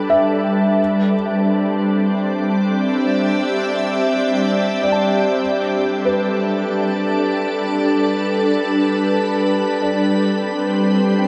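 In free time and G major, this serene, luminous ambient passage, cut from a longer piece, rests on a soft, pure organ-like pad holding bright, full-bodied sustained chords up front with ensemble chorus and shimmer reverb, while a muted, intimate felt-muted upright piano drifts through mellow arpeggios and an organ-like drone sits calm in the background, both fading out across the full 11.3 seconds under a huge, wet reverb as the harmony moves from G69 to Cadd9/G and back, closing on Csus2/G at 10.0 seconds.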